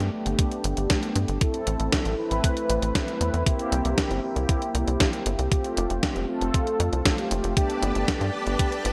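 Italo disco at 117 BPM in G mixolydian, sunny and playful, where round, detuned synth brass stabs with chorus, delay and shimmer reverb ride over a punchy sawtooth sequencer bass, a fat-snare 12-bit drum machine with hi-hat and gated reverb, and a thumpy electronic kick entering at 0.4 seconds, all moving through Gadd9, Am, C7 and Fadd9 before a lush, vintage string machine with ensemble chorus comes in with a soft attack at 7.6 seconds in this short cut from a longer piece.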